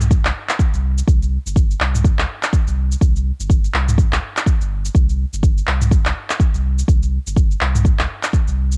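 Warm and hypnotic, this afro house excerpt moves at 124 BPM in 4/4 with a 58% swing on the 16ths, tuned to A4 = 438 Hz. A round, sine-like sub bass sits up front between G1 and C2, pumping under sidechain, while a punchy, layered electronic kick enters at 0.1 seconds and drops out at 8.4 seconds. An afro-pop kit of cabasa, handclaps and toms carries a tape-softened character, all framed by digital ambience and the grain of a home cassette recording.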